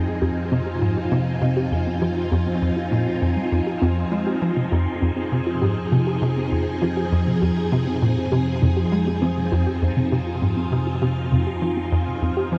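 Ambient, sequencer-driven space music with an expansive, mysterious mood, where a tight, punchy sequencer bass riff with ensemble chorus and tape echo drives beneath bright, swirling sustained chords from a phased string machine, while a warbling, lo-fi pluck with tape echo plays arpeggios in the background over an evolving analog drone and an airy, wind-like tuned noise texture, all set in a huge ambient reverb with dark production.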